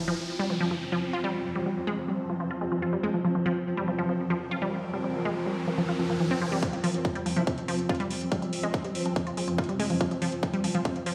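A hypnotic psychedelic trance passage at 142 BPM opens on an F5 chord with a mellow, pulsing gated texture, electronic riser and downlifter effects, and a bright, warbling detuned unison pluck riff up front with dub echo and tape colour, soon joined by a blurred, cloudy granular pad, with the texture, pluck and pad all pumping against the sidechain. At 6.6 seconds the build-up begins with a tight, up-front electronic kick drum and metallic hi-hats, while a very quiet formant-sweep wobble bass briefly adds a second line, everything ringing through a stone room as if played on a big sound system.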